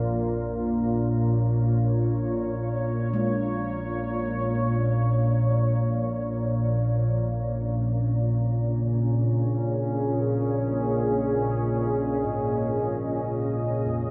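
A nasal, organ-like drone sits up front in the low register alongside a deep, detuned, wave-folded pad with ring modulation, while soft, very quiet bronze gongs, played with padded beaters, trace metallic, beating arpeggios in this unsettling, cavernous dark ambient drone cut from a longer piece. A filter sweep moves across the drone throughout, and the harmony shifts at 5.8 s, with the drone carrying ensemble chorus and the pad carrying chorus, each with its own reverb. A huge, wet reverb with a 7.7-second tail surrounds the mix before a fade-out begins at 11.5 s.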